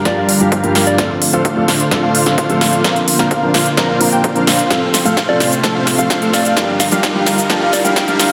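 Triumphant and uplifting, this festival progressive house build-up at 129 BPM sets a huge, compressed supersaw riff and up-front, overdriven drums with punchy snare and crisp hats over a dark, worn grand piano with audible action noise, a lush, airy pad, a thick background arpeggio lead with cassette-tape colour, a round, warbling FM lead that returns at 5.3 seconds, a very quiet kick and riser, and a filter sweep, all moving through Gm7, Dm7, Bbadd9 and F in a wet hall, with pumping sidechain on the piano, pad, arpeggios and supersaw.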